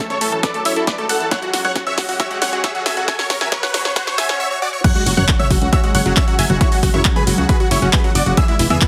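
A straight 4/4 pulse at 136 BPM drives this bittersweet, soaring uplifting trance excerpt in F# minor, where an overdriven electronic kick arriving at 0.4 s and a punchy analog drum machine of snare, handclaps, hi-hat, toms and crash build through a fill toward the drop at 4.8 s, while a huge, euphoric detuned supersaw lead carries the melody over a clear baby grand piano line, a lush, thick unison pad, a bright, evolving analog pluck arpeggio under a filter sweep and a very quiet riser, swell and impact, until a round, mellow FM bass enters at 5.1 s, with the lead, piano, pluck and bass all sidechain-pumping and a dense, heavily limited master holding it together.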